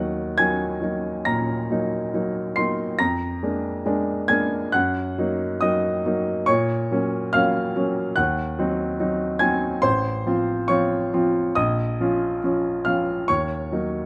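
Set at a slow 70 BPM in 4/4, the rhythm moves with a flexible rubato feel, pulling the pulse gently as this romantic character piece for solo piano unfolds in Bb minor. The only voice is a warm baby grand piano, natural in tone with a short sustain, placed up front and captured by close, detailed microphones that bring out its intimacy, while light reverb lends a touch of space. Its playing spans a broad range, from A1 in the bass up to C7 in the treble, giving the brief passage depth and shimmer. The harmony opens on Ebm, travels through Bb7/F, Gb/Bb and a darkening Cdim/Eb at 8.2 seconds, then reaches Bbm at 11.6 seconds before settling on Ebm7 at 13.3 seconds. The mood is bittersweet and brooding, and the fragment, cut from a longer piece, ends at 14.1 seconds still hanging in that unresolved shade.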